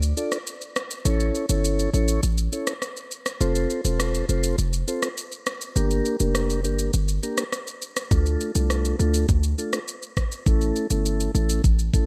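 A punchy, heavy 808-style bass with a sine body and noise layer underpins this hypnotic, tough dancehall excerpt, joined by an electronic island pop kit of knocking kick, rim click and shaker in gated reverb, and a soft, flute-like tonewheel organ that enters at 0.2 seconds through a slow rotary speaker with sidechain pumping, all framed by bright 1980s-style digital production and light reverb.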